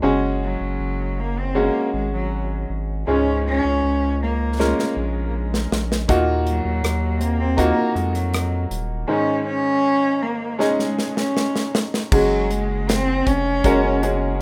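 A bowed solo cello carries the melody from 0.4 seconds, its clear, slightly nasal and boxy tone shaped by vibrato and kept smooth and even in its middle register. This heartfelt, tender pop ballad moves at an unhurried, straight 4/4 pace, with a bright upright piano supplying woody, brilliant accompaniment whose short sustain lets each chord ring open and then fall away. Underneath, a saturated sub bass adds a deep, thick, sine-like foundation with a fast attack and sustained notes. A modern acoustic drum kit arrives at 4.6 seconds with a fill, bringing a punchy kick, medium-tuned snare, rim clicks, hi-hat and crash in an airy, polished small-room sound, and it plays a second fill before the music shifts into a new section at 12.1 seconds. The harmony moves through Gbsus2, Db, Ebmadd9 and Absus4 before returning to Gbsus2. All four parts sit up front in a rough home-demo mix with moderate studio reverb, and the passage is cut from a longer piece.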